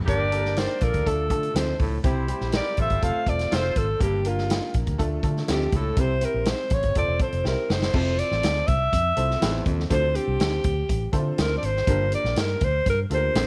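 A breathy, up-front alto saxophone carries the melody through this urgent, driving stretch of uptempo 1960s-style soul at 122 BPM in G dorian, while a warm, tight horn section adds a second line until 3.9 s. A woody, slightly detuned upright piano, a whispered baritone saxophone riff sitting in the background, and a dark, foam-muted fingered electric bass fill out the groove, and a vintage drum kit with a punchy kick and rolled-off top drives the 4/4 pulse and plays a fill from 7.4 s. The cycling Gm, Dm, C and F chords give way at 7.9 s to Fmaj7, Dm7 and Gm7, heard in a small room with light reverb.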